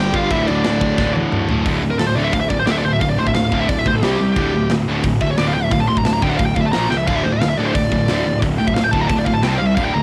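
A straight 4/4 pulse from a tight metal drum kit, with a tight kick, medium-tuned snare and bright cymbals, carries this dark, aggressive heavy metal fragment, and a drum fill at 1.0 seconds leads into a high-gain lead guitar solo from 1.7 seconds. Up front, the dark, distorted high-gain lead guitar plays the melody throughout, while a very quiet, bluesy overdriven lead guitar adds a brief second line that stops at 1.1 seconds. Underneath sit a bright high-gain riff guitar, a sludgy overdriven riff guitar and a growly fuzz-picked electric bass, all with little reverb, and the cassette tape character of a home cassette recording colors the lead, both riff guitars and the drums.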